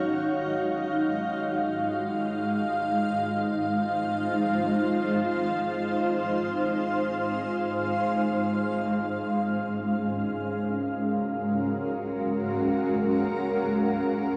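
Ambient and serene, this luminous fragment of a longer piece features a single granular cloud pad held up front, its detuned sine tones blurring and evolving through slow attacks and long releases, with its own built-in reverb and delay. The harmony drifts from Ebm11 to Fm7 before settling on a Gbmaj9 at 8.5 seconds. A huge, wet reverb and a dark, warm production wrap the sound in a soft haze.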